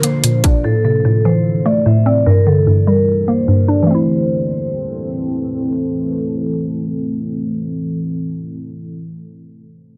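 Brooding and eerie, this short trap-flavored hip hop excerpt moves at 148 BPM in a half-time feel, rooted in A phrygian over a Bb, Am and Gm progression. A trap drum kit opens with a hard-clipped kick and metallic hats, tape-colored and up front, but it drops out after 0.5 seconds. A vibraphone struck with medium hard mallets carries the melody until 5.1 seconds, its ringing tone shaded by a slow motor vibrato, a boxy small-room character, a low-pass filter and tape echo. Beneath it, a mallet-like synth pluck provides accompaniment with a woody, round FM voice, a noise layer and a warbling vintage chorus, sitting prominently in the mix. A deep, detuned sawtooth pad with a sine sub octave holds sustained chords with a slow attack and long release, clouded by chorus, phaser and built-in reverb. A filter sweep runs through the opening 3.9 seconds, and the dense, heavily limited master keeps a light reverb around the whole.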